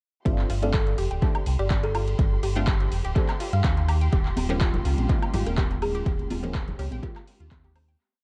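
Deep house at 124 BPM in G minor, moody and late-night, with a light 16th-note swing and a slightly flat tuning that suits its cassette-tinged, echo-heavy mix. A punchy, overdriven electronic kick sits up front in a four-on-the-floor pulse, joined by a programmed kit of metallic hats, claps, ride and woodblock, while a deep sine sub bass with an octave layer plays a syncopated riff and pumps against the kick. Muted, nasal sawtooth chord stabs move one shape in parallel through a phaser and tape echo, moving from G9sus4 to Eb9sus4 at 3.9 seconds, and a round, detuned analog pluck runs a 12-step loop that drifts against the bar behind them. A woody, buzzing kalimba with sampler grit carries the melody in short answering phrases, and a lush, bowed violin section holds a high note softly in the background. At 4.1 seconds an airy, breathy pad enters with slow-attack sustained chords, and at 4.4 seconds close, dry congas and bongos add syncopated hand drums in the back before the piece fades out from 5.4 seconds.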